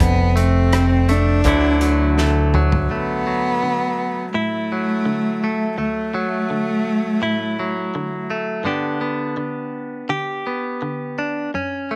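A cello, electric guitar, fingered bass and loose drum kit begin together in this intimate, nostalgic acoustic folk-pop ballad, cut from a longer piece and moving in a straight 4/4. The drums bring a fat snare, punchy kick, hi-hat, rim click and toms in a pumping studio room, while the round, dark bass sits up front beneath them; the drums close with a fill that ends at 2.9 seconds, where the bass also drops out. From there the guitar carries on as the main accompaniment, its direct-recorded, clean, picked tone bright, compressed and twangy. Above it, a single warm cello sings the melody close and up front, played sul tasto with an airy bow, soft attack and light vibrato, a slapback echo trailing each phrase until it stops at 8.3 seconds. The harmony moves from F to Dadd9 and then to G, all set in a light reverb.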